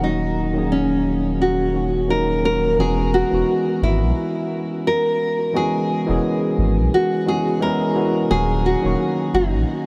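Soaked in a huge, dreamy 7.2-second reverb, this blissful excerpt of sunset chillout drifts at 87 BPM with a gentle 16th-note swing in E lydian, where a full-bodied, fingerpicked nylon-string guitar carries the melody through tape echo over a worn, slightly out-of-tune tine electric piano, also echoed, and a round, deep sine sub bass, all three up front as the harmony moves from D#m7 to E69 at 2.8 seconds and back at 8.3 seconds.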